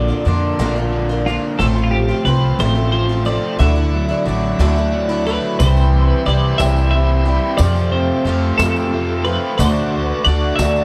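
An up-front upright bass anchors this hopeful, open-road slice of folk rock and heartland rock, its pizzicato steel strings sounding woody and dark at 60 BPM in a straight 6/8. Above it, a bright, twangy twelve-string electric guitar carries the melody with harmonic tremolo and plate reverb, while a picked twelve-string acoustic guitar adds boxy, shimmering, octave-doubled accompaniment bathed in the same plate reverb. A double-tracked, compressed overdriven electric guitar drives a riff underneath, and a very quiet, distant cajon played with soft hands taps out faint snares as if from a large room. From 1.6 seconds a full, shouting tonewheel organ sits in the background with slow rotary speaker, light overdrive and plate reverb, and at 5.6 seconds a jingly tambourine joins as the harmony moves through C, Fadd9 and D after the opening Bb, F/A and Dadd9. The production is dark and warm with light reverb, and the excerpt is cut from a longer piece.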